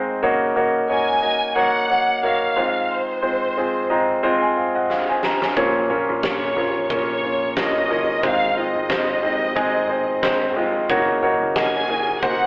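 Dramatic and bittersweet, this piano-driven pop excerpt in Bb minor moves at 90 BPM with a light sixteenth-note swing, opening on a clear, up-front concert grand with deep bass and short sustain, joined at 0.9 s by an expressive violin section full of vibrato and portamento, before a hall-sized drum kit with a fat snare and punchy kick arrives at 4.9 s and a growly picked electric bass settles into the background at 5.6 s, all heard as a live band in one room through a wet reverb and a telephone-like sound.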